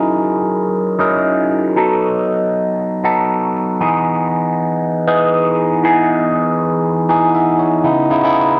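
A light reverb and a digital ambience surround a single overdriven tine electric piano, which sits up front, barky and gritty through a combo amp with a phaser colouring its tone. This short disco excerpt, cut from a longer piece, moves at 118 BPM in 4/4 with a 56% swing on the sixteenths, giving it a driving, danceable feel. The piano plays alone from start to finish, ranging from C#3 to F#5 across its 8.6 seconds. The harmony moves from F#13 to B7/F#, then settles on Emaj7 before arriving at C#m9 at 7.9 seconds. Just before that last change, the piano adds a fill from 6.8 seconds to close out the section.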